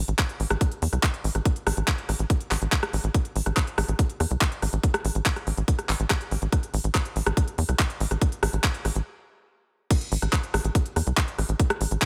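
A straight 4/4 pulse at 142 BPM drives this alien, intense psychedelic trance excerpt in A minor, with a tight electronic kick and a crisp garage drum kit of hi-hat, handclaps, rim click and crash cymbal, both layered, tape-warm and re-recorded in a large room. Up front, a punchy, nasal sequencer bass of sawtooth and square waves plucks through a filter with a fast attack and decaying, mellow tone between A1 and E2. The mix is dry, and after a stop from 9.1 s the drop lands at 9.9 s.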